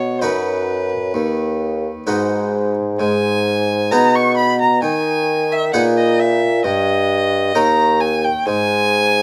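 In a straight 4/4 at 66 BPM, this flowing, dance-like baroque-style sonata movement moves from B major into G# minor at 3.0 s, reaching a D#/G chord at 6.6 s before the harmony drops away at 8.5 s. A single up-front violin carries the melody with vibrato and a focused, smooth top, while a mellow, roomy bassoon with light vibrato and a soft attack plays the bass. A brilliant, plucked Italian-style harpsichord with octave strings fills in the continuo accompaniment, all set in light reverb and caught by close, detailed microphones in this fragment of a longer piece.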